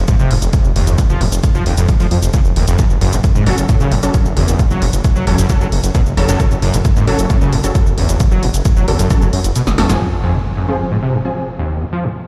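Hypnotic and relentless, this driving peak-time techno cut, taken from a longer piece, runs in a straight 4/4 pulse. A punchy, tape-warm electronic kick sits up front beside a thick, menacing detuned saw bass that beats against itself and pumps under sidechain, while an overdriven acid bass carries the riff with a squelchy, gritty, resonant tone, filter sweeps, chorus and delay. A punchy analog drum machine adds low-passed hi-hat, shaker and snare, with the hats and percussion pumping under sidechain. At 3.5 seconds an aggressive, unison rave stab enters with detuned sawtooth bite, a filter pluck, chorus, built-in reverb and delay. The kick drops out at 9.6 seconds for a brief drum fill and band accent, and at 10.0 seconds an electronic impact hits as the harmony moves into a new section. The mix sounds like a big sound system in a bare room, dry overall yet framed by a large studio reverb.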